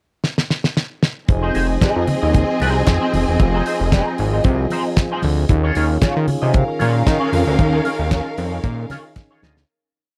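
Celebratory and joyful, this short disco piece opens with a drum fill on a damped 70s kit before the full groove arrives at 1.3 seconds. The dry, up-front kit has a fat snare, tight kick and open hats on the off-beats over a four-on-the-floor beat, while a thick, detuned sawtooth bass plays a syncopated line with muted ghost notes, chromatic approach notes and a filter sweep. A slightly broken-up, twangy electric guitar chops out sixteenth-note figures through wah and analog chorus, and a lush symphonic string section holds swelling long notes with vibrato and portamento. In the background, a mellow tonewheel organ sustains a round, dark pad through a slow rotary speaker, and crisp group handclaps mark the backbeat from 1.8 seconds. Congas add a very quiet groove with a slap on two and open tones on four. The harmony moves from Fm7 to Eb9sus4, and the track, set in a warm production, fades out from 7.6 seconds.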